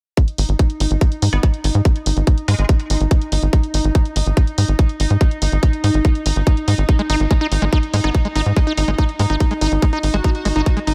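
Hypnotic and alien, this psychedelic trance excerpt drives forward at 143 BPM in a straight 4/4, tuned slightly below standard pitch and sitting on a G#5 chord. A tight, up-front electronic kick anchors the groove alongside a layered electronic hi-hat, while a punchy sequencer bass, nasal and evolving with a sawtooth bite and quick filter plucks, enters at 0.4 seconds. Above them a pulsing, tempo-synced gated texture holds sustained chords, its bright unison tone treated with chorus, built-in reverb and sidechain pumping. In the background a metallic, aggressive FM wobble bass surfaces briefly early on and returns from 8.0 seconds, saturated and compressed, with chorus, a high-pass filter and digital delay. At 7.0 seconds an overdriven acid bass riff cuts in, squelchy and gritty with a resonant filter pluck, distortion and delay. The mix stays dry and close, with little room sound, giving the layered synths a tight, forceful presence.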